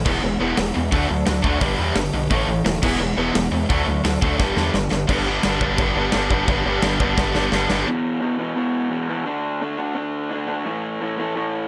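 A raw, lo-fi garage guitar leads this rowdy, energetic punk rock excerpt at 173 BPM in a straight 4/4, its overdriven, picked riff sitting up front and running the full length. Beside it, a tight, bright distorted guitar plays its own picked riff, while a gritty, nasal synth bass with a sawtooth edge, oscillator sync and a filter sweep growls low with aggressive distortion and a fast-attack, decaying tone. A big acoustic rock kit with a punchy kick, medium-tuned snare, hi-hat and crash drives from a studio room, dropping in short fills before each change of section. The chords move through E, D, G and A, shifting to bare power chords later on. At 7.9 seconds the second guitar, bass and drums stop, leaving the garage guitar alone over light reverb until the cut.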